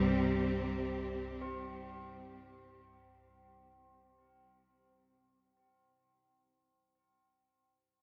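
Drenched in a vast, cavernous reverb with a dulled, muffled top, this short fragment of dark ambient drone floats in free time, tuned slightly flat to A4 = 437 Hz, and feels unsettling and grim from its opening C5 chord. A lush, bowed cello section sits up front with smooth vibrato in sustained chords, over a low, warbling, detuned analog drone thickened by chorus, and both fade out by about 2.9 seconds. Solemn, metallic tubular bells ring softly in airy arpeggios through tape echo, lingering alone until 7.0 seconds.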